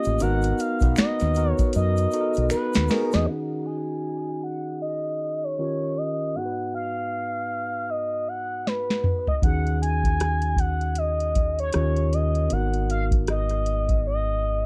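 Over a swung sixteenth-note feel, this late-night, soulful neo-soul R&B excerpt sets a smooth, sawtooth synth lead with chorus and vibrato up front against a bright, barky tine electric piano through a combo amp, while a soft vintage rhythm box with deep kick, crisp snare and metallic hats, a dark, round, punchy dub bass, and a background tube shaker with finger snaps all drop out at 3.3 seconds as a filter sweep begins, the rhythm box returning with a fill at 8.7 seconds and the bass at 9.4 seconds, all in a dry, close 1970s-style studio sound.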